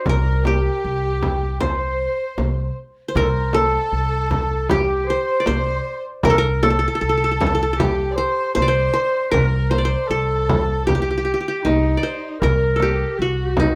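A bright-edged, plectrum-plucked qanun carries the melody up front in this melancholic, longing excerpt of a Turkish makam ensemble piece, with a classical-style clarinet and a lush, smooth bowed violin section with vibrato shaping second lines, a woody, thumpy pizzicato upright bass holding a low C, and a hard-handed frame drum from a live room, all set in light reverb.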